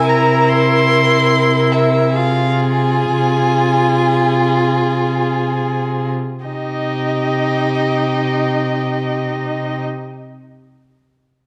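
In free time that slows through the first 6.5 seconds, this solemn, yearning fragment of a slow romantic string-quartet movement in C minor sets a distant, rich-toned first violin singing the high melody over a focused second violin, a clear viola accompaniment and a close, up-front cello holding a low C, all bowed with vibrato and moving from C7 through Fm/C to Cm at 6.5 seconds, bathed in a moderate scoring-stage reverb and coloured by the worn, warbling pitch drift of old cassette tape.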